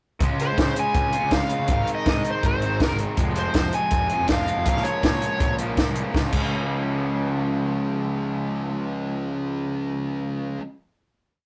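A rough rehearsal-room recording with tube saturation and light reverb carries this wistful yet upbeat indie rock piece in Db major at 162 BPM, where a dry, up-front cocktail drum kit with a punchy kick, high-tuned snare and dark cymbals plays an indie four groove until 6.4 s, a smooth overdriven lead guitar carries a motif-based melody until 5.5 s, a raw garage guitar sounds ringing chords, a thick fuzz guitar picks arpeggios in the background, and a bright, fuzzy picked bass drives a syncopated riff, with the guitars and bass holding a final Db chord from 6.1 s.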